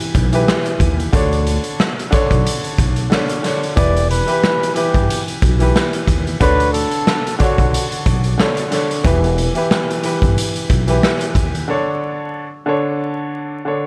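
Boom-bap hip-hop at 91 BPM in E dorian, this short excerpt carries a tough, reflective mood over a swung 4/4 groove. A raw garage drum kit sits up front with a punchy kick, medium-tuned snare, rim clicks and hi-hat, its sound saturated and gritty with a rolled-off top and a bright stone-room character. Pizzicato upright bass with steel strings adds a woody low end, while a clear upright piano, vintage in tone with long sustain, carries the chords through cassette tape coloring and filtering. From 3.8 to 7.9 seconds a trumpet with a bucket mute takes a veiled, breathy jazz-style solo with light vibrato, softened further by filtering and tape echo. The harmony moves between Em and Bm7 before the bass drops out at 11.6 seconds and the drums at 11.7 seconds, leaving the piano alone on an Aadd11/D chord in the closing break, all set in light reverb and studio ambience beneath a layer of vinyl crackle.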